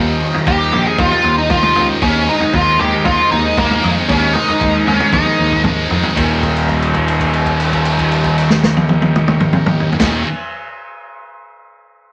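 Psychedelic rock with a hazy, kaleidoscopic mood, cut from a longer piece, where a bright, double-tracked fuzz guitar riff runs through a phaser over a round, overdriven fingered bass and a punchy, mid-forward vintage drum kit with dark cymbals. A dark, smooth lead guitar with wah and overdrive sings the melody up front until 5.6 seconds, as a buzzy combo organ holds chords in the background. A drum fill from 5.1 seconds leads into a held note over an Eb7 chord at 6.2 seconds, all set in a moderate studio reverb.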